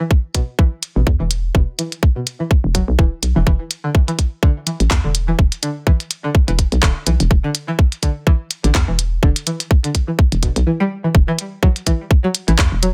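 Dry, dense and heavily limited, this short cut from a longer minimal techno track has a hypnotic, clinical mood at 125 BPM in 4/4, with a light swing on the sixteenths. A twangy, string-like resonator pluck opens the riff at 0.0 seconds, its bright sawtooth body carrying a noise layer, a filter sweep, chorus and delay, and pumping against the sidechain. An up-front, tight, layered electronic kick arrives almost at once, joined by a minimal click drum kit of handclaps and clicky hats that sounds re-recorded in a small room. From 1.0 seconds a hollow, bouncy FM bass knocks in low with a fast attack and mellow decay, pumping as well. At 11.1 seconds the piece reaches a drop that runs to the close at 12.9 seconds.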